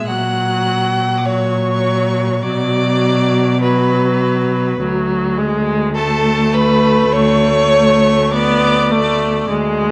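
A string quartet opens together in a lyrical, serene slow movement cut from a longer piece, the first violin singing a smooth, distant melody high above a close, clear second violin line, while a focused viola and a rich, up-front cello carry the accompaniment and bass with vibrato. The rubato phrasing moves through F#/A#, Bm and Dmaj7, and the violins fall away at 9.5 seconds, leaving viola and cello to finish at 9.9 seconds. A moderate scoring-stage reverb surrounds the players, and the sound carries the worn, warbling pitch drift of old cassette tape.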